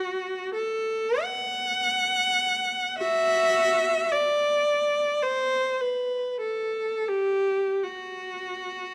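Close, detailed microphones place the viola up front in a moderate recital hall reverb that adds a gentle sense of space around the instrument. This is a short classical passage for unaccompanied viola, a single bowed line played by one player from 0.0 to 8.9 seconds, cut from a longer piece. The tone is rich and focused, coloured by vibrato, and the melody moves between F#4 and F#5. The pulse is free and expressive, with rubato letting the phrasing breathe in a loose 4/4. The mood is nostalgic and lyrical, like a private reflection heard at close range.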